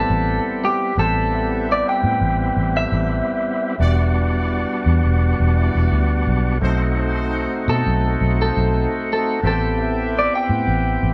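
A slightly broken-up electric guitar through a small old amp carries the melody up front, its picked, compressed tone sitting high over a smoky, mournful blues in a straight 4/4. Beneath it, an overdriven tonewheel organ fills in thick, gritty chords with audible key click, turning through a slow rotary speaker. A vintage foam-muted electric bass, played with the fingers, anchors the low end with a dark, round sound close to the front. From 1.0 seconds to 10.5 seconds, a bright horn section holds sustained jazz-style chords with light vibrato in the background. The band sounds as if it is playing live together in one room with moderate reverb, moving from Am7 through Em7 and B7b9 before settling back on Am7 in this short cut from a longer piece.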